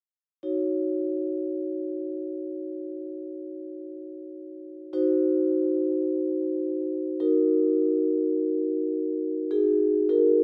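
In free time, this contemporary classical fragment for solo vibraphone drifts in a flowing, hypnotic mood, cut from a longer piece and lasting about ten seconds. Played with medium mallets and the motor off, the vibraphone sits up front with a dark, smooth, metallic ring, moving through minor-seventh, minor-sixth and added-eleventh harmonies within a compact middle range. A moderate studio reverb gives the tone a gentle halo.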